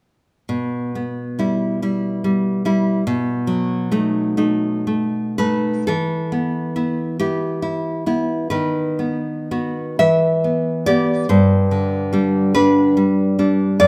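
Romantic solo classical guitar in E minor, passionate and melancholic, moving with a free rubato in a slow 6/8 at roughly 38-49 dotted-quarter beats per minute and tuned slightly low to A4 = 436 Hz. A fingerpicked nylon-string guitar sits up front with a warm acoustic tone, audible finger squeaks and a moderate recital-hall reverb. It opens over an Em/B to B7 progression before shifting at 5.9 seconds into a second passage that moves through Em, B/D# and back to Em before arriving on G, as this short fragment of a longer piece ends.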